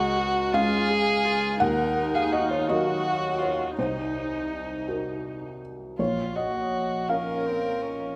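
Neoclassical piano and strings in Bb minor, melancholic and fragile, unfolding with rubato at 55 BPM in 6/8, as a dark, woody solo violin carries the sul tasto melody with vibrato over a soft, felt-muted upright piano that sits mellow and up front, alongside a rich, close viola playing sul tasto with light vibrato and an airy bow, the harmony moving from Db through Ebm and Cm7b5 to Bbm in the wet reverb of a recital hall.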